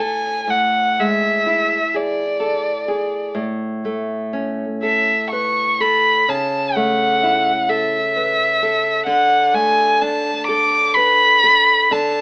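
Serene and warm, this romantic duo for violin and classical guitar unfolds in a slow, rubato 6/8 at 42 BPM, with uneven beats and a key of A major. The bowed violin sits up front carrying the melody between D5 and D6, its soft attack, vibrato and portamento giving the line an expressive, singing quality. Beneath it, the fingerpicked nylon-string guitar supplies accompaniment from A2 to B4 at a lower level, its fresh strings sounding warm and acoustic. Both instruments play throughout the 12.2-second excerpt, moving from E7/A through A and A/C# to D5. The duo sounds as if playing live together in one room, with light reverb and a lo-fi AM radio coloring that lends the whole a nostalgic, intimate glow.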